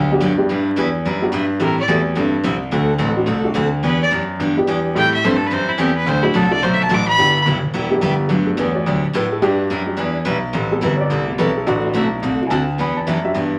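A biting, nasal fiddle carries the melody up front in this cheerful western swing excerpt, entering at 1.6 seconds with light vibrato and an airy bow before falling away at 7.4 seconds. Set in G major at a brisk 215 BPM with a swung eighth-note feel, the tune cycles through Em7, Am7 and D7 changes, landing on G6 and Gmaj7 at the turnaround. A bright, full-bodied dreadnought acoustic guitar picks out the accompaniment with audible finger squeak, while a concert grand piano holds down the bass line with a deep, polished tone and long sustain. After the fiddle steps back, a dark, woody upright piano takes the solo spotlight from 8.3 seconds, its mellow, slightly detuned sound carrying audible action noise for an intimate feel. A wet studio reverb and a layer of vinyl crackle give the whole recording a vintage, swinging character.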